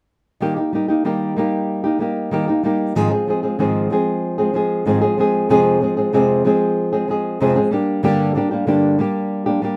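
A lone nylon-string guitar, thumb-plucked with a dark, small acoustic tone, sits up front in this short pop fragment cut from a longer piece. It plays accompaniment from 0.4 to 9.8 seconds at an easy-going 94 BPM in a straight 4/4, giving the music a heartfelt, relaxed mood. The harmony in Eb major moves from Eb to Ab6, then to Fm and on to Gm. The guitar covers a range from its low register up into the middle, and the instrument is tuned slightly high, with A4 at 442 Hz. A moderate studio reverb adds a gentle sense of space around the intimate sound.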